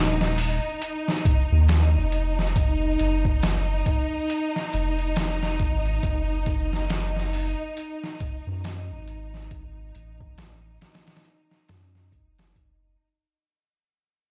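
A slow, swung 69 BPM trip hop groove in 4/4 comes from a compressed, pitched-down, sampler-style drum kit, its muffled, thumpy kick, medium-tuned snare and hi-hat sitting up front in studio reverb from 0.2 to 12.8 seconds, while a deep, round dub sub bass with a soft triangle-and-square tone holds sustained notes in Eb minor. Above them, a bright, lush bowed string section sustains intense, vibrato-rich chords around Eb4, roughened by vintage 12-bit sampler grit, moving from Ebm to an unharmonized passage at 6.0 seconds. The smoky, cinematic excerpt, cut from a longer piece, fades out throughout and sounds as if played on a big sound system in a bare room.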